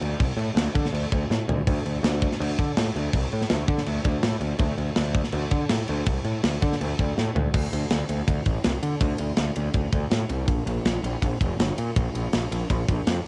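A fuzzed, picked electric bass and a tight metal drum kit start together, driving a dark, epic heavy metal excerpt in D minor at 163 BPM in straight 4/4. The bass sits up front with a bright, growly, overdriven tone, ranging from F1 to D3. The drums, also up front, have a mid-forward, rolled-off character with a medium-tuned snare and tight kick, coloured by cassette tape, and use crash, ride, snare, toms and kick. A drum fill arrives at 1.3 seconds, and another at 7.2 seconds leads into a new section at 7.5 seconds that runs to the end. The dry, home-recorded cassette sound keeps both parts close throughout the cut-off fragment.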